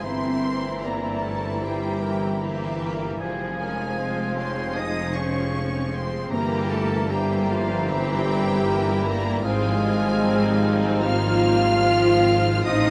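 Elegiac and yearning, this slow romantic orchestral movement in F minor moves at 76 BPM with a rubato feel, its violin section carrying the melody high above with focused, vibrato-rich bowing while flute, clarinet, oboe and a second violin line weave inner voices. Violas, bassoon and a mellow French horn section fill out the harmony, with the horns sitting most prominently, while a very quiet harp ripples through ringing arpeggios over a bass of dark, woody cellos, tuba and double basses. The scoring-stage reverb lends a roomy, distant blend to this fragment of a longer piece, which circles between Edim/G and Fm across its 12.9 seconds.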